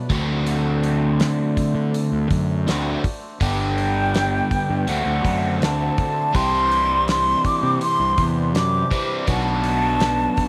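A reedy, very quiet pedal harmonium holds sustained chords from the start, joined at once by a bright, crunchy overdriven guitar riff colored by phaser and double-tracked up front. This short psychedelic rock excerpt moves at 82 BPM in a straight 4/4, centered on D mixolydian with a hazy, trippy mood. A round, dark fuzz bass, fingered and overdriven, sits up front beside a dry 70s drum kit with a fat snare, tight kick and rolled-off top. At 3.4 seconds a breathy concert flute enters with an expressive, tongued melody marked by vibrato, lifted highs and tape echo. The harmony passes through D7, G, back to D7, then Cadd9 and Bm7, and a moderate spring reverb gives the whole a gently lingering space.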